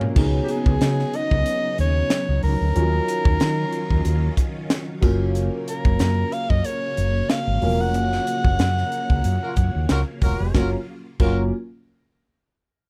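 A dry, glossy mix opens this upbeat, polished 1980s jazz-funk pop excerpt at 92 BPM in F# major, where a breathy, intimate soprano saxophone with slapback echo carries the melody up front over a crisp fusion drum kit with bright cymbals, a growly fretless electric bass, a boxy concert grand piano with analog chorus, and a lush string machine with phaser sitting in the background, while a distant, roomy horn section enters at 9.4 seconds for a short second line.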